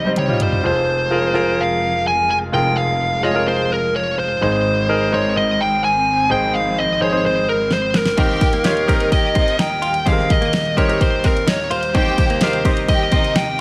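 A straight, driving pop beat opens this piano-driven excerpt, as a punchy, fat-snared drum kit and the grand piano share a brief fill before the drums drop away at 0.6 seconds. The clear concert grand carries the accompaniment with deep bass and short sustain, while a dark, fuzz-distorted lead guitar sings the earnest melody up front. Behind them, a studio string section holds intimate, sul tasto chords with vibrato as the harmony moves from C minor through F minor and A-flat to E-flat. The layered, tape-tinged drums return with a fill at 7.7 seconds, and at 8.2 seconds a lush symphonic violin section adds a second line while a bright, direct-recorded clean electric guitar picks a compressed riff through spring reverb, both sitting in the background. Light reverb and digital ambience round out the mix.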